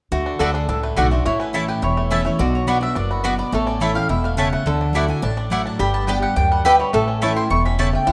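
A lively, virtuosic bluegrass fragment opens at 0.1 s with a twangy, fingerpicked banjo carrying the melody over a nasal, metallic slide line on lap resonator guitar, a bright jumbo acoustic guitar picking the accompaniment with audible finger squeak, and a growly, thumpy upright bass sitting up front. From 0.4 s two round-toned mandolins join, one adding a second melody and the other, warm and up front, punctuating with stabs. The chords move from D through A, Bm and Dadd9 to G and back to A, heard in a rough home-demo mix with light reverb.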